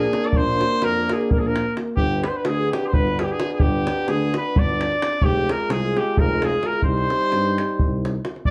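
From the first beat, a tight davul drives a bittersweet, fiery Balkan brass band tune in 7/8 at 259 BPM (counted in eighths) in C minor, with a clear, distant trumpet carrying the melody up front through plate reverb, a close-miked clarinet playing a second line in the background, a vintage, mellow trombone with light vibrato and a warm trombone sharing the accompaniment, and a roomy tuba anchoring the bass, as the 8.5-second excerpt moves through Bb, G, Fm and Cm in a studio reverb heard from further back in the room.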